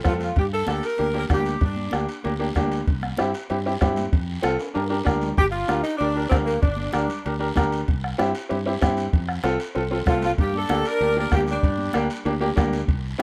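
In a rough home-demo mix with studio ambience, this driving, danceable cumbia excerpt in G minor at 192 BPM rides on a soft-beatered bombo, very quiet high-tuned congas, a raspy, distant guiro and ringing metal-shell timbales, with a bright, woody upright piano up front showing audible action noise, a fingered electric bass, and a jazz-style saxophone section whose melodic phrases begin at 0.1, 5.4 and 10.1 seconds, the last joined by a reedy, mellow accordion in the background.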